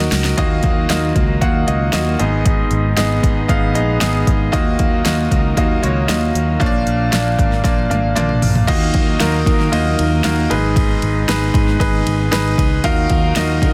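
Earnest and bittersweet, this piano-driven pop passage, cut from a longer piece, moves in a straight 4/4 pulse. A brilliant, natural-sounding baby grand sits up front, carrying the accompaniment over a minor-leaning progression that circles between Ebmadd9 and Abm, with a Bb chord adding tension before the turn. Beneath it, a picked electric bass gives a growly, amped edge, while a thick, detuned sawtooth pad with chorus warbles very quietly in the background with slow-attack, long-release chords. The electronic deep house drum kit is punchy and layered, with a fat snare, hi-hat, ride, crash and toms, opening on a short fill and rolling into another at 7.7 seconds. A crisp, human group handclap joins faintly at 0.9 seconds and drops away before a new passage begins at 8.7 seconds, all set in light reverb under a dense, heavily limited modern master.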